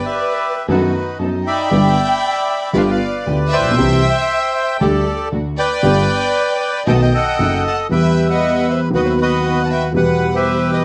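A rubato 4/4 tango at 117 BPM in G major, this playful, elegant excerpt opens with a reedy, bright bandoneon carrying the melody up front while a lush, expressive violin section adds a bowed second line with vibrato. At 0.7 s an intimate concert grand piano joins with natural, deep-bass accompaniment and audible action noise, alongside a dark, woody symphonic string section placing smooth-topped stabs in the background. The harmony turns toward E minor at 7.9 s, all within a dark, warm production and moderate studio reverb.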